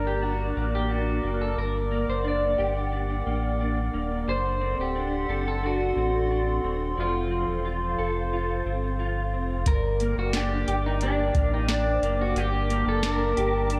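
A dreamy, reverb-soaked mix carries this ethereal, melancholic dream pop excerpt, where a slightly broken-up, twangy electric guitar through a small old amp sings the melody with lush chorus and tape echo over clean picked guitar arpeggios, a warbling, nostalgic tape-like pad of sustained chords, and a deep sine sub bass with octave, until a dry, analog rhythm box with crisp snare and metallic hats arrives up front at 9.7 s alongside a very quiet, woody marimba.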